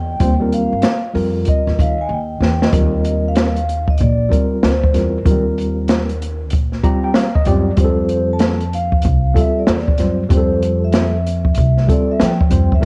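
A mellow, ringing vibraphone played with soft mallets carries the melody over a woody, growly pizzicato upright bass from the start of this relaxed jazz-hop fragment in Eb major at 95 BPM, with a swung 16th-note feel. At 0.2 seconds a worn, slightly out-of-tune tine electric piano, lightly overdriven through its built-in speakers, joins up front with a dark, smooth acoustic jazz kit and its boomy kick. The kit plays a fill at 2.1 seconds, and after an electric piano fill the harmony moves from Ebadd9 to Fmaj9 at 7.8 seconds, with cassette tape character on the vibraphone and electric piano and a small room with light reverb giving the sound of a home cassette recording.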